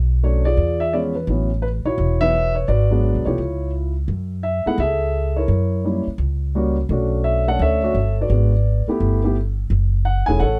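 Sophisticated and relaxed, this swinging jazz clip moves at a brisk 171 BPM in 4/4 with a lilting eighth-note swing. The upright bass opens it, plucked pizzicato on steel strings, with a woody, thumpy tone that sits up front in the mix. A dark, mellow baby grand piano carries the melody from 0.2 s, sharing that close presence. The harmony begins in A major and moves to F# minor at 4.1 s, passing through rich colors like Bm9, A69, G#m7b5 and G69 before settling on F#m9. Recorded with close, detailed microphones and very little reverb, the sound is intimate and dry, and the clip is cut from a longer piece.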